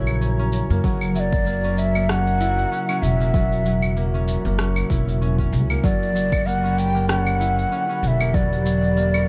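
Organic downtempo with a meditative, hypnotic mood and a gently swung sixteenth feel, this passage from a longer piece sets a breathy, close-miked ney melody with vibrato, delay and shimmer reverb over a dark, detuned tape-like pad that warbles in the background with chorus and sidechain pumping. A mellow concert harp rings out arpeggios through a low-pass filter and digital delay, while a woody pizzicato upright bass sits up front, also pumping with the sidechain. Tape-tinged electronic claves, shaker and rim click enter at 0.1 s, and a deep electronic kick plays from 0.8 s to 8.5 s, all within light small-room ambience as the harmony moves from F#7 to G at 5.8 s.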